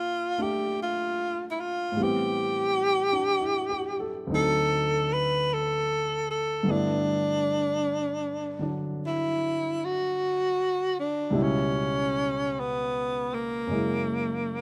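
Late-night and romantic, this slow swinging jazz ballad fragment sets a breathy tenor saxophone up front, its soft-attack melody colored by vibrato and scooped notes, over a baby grand piano whose natural, short-sustain chords move from Bbmaj9 through a ii-V into G6 before turning toward C#m7b5 and F#7, all in a lightly reverberant room.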